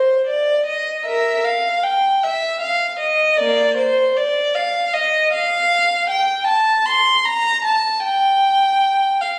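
In a flexible, rubato 3/4 at 77 BPM, this serene and radiant excerpt from a baroque-style classical suite movement features a single unaccompanied violin playing alone for its full 9.4 seconds. The bowed violin sits up front yet has a distant, warm tone, with expressive vibrato and portamento across a range from Bb3 to C6. A moderate recital hall reverb lends the solo line a glowing, spacious sheen.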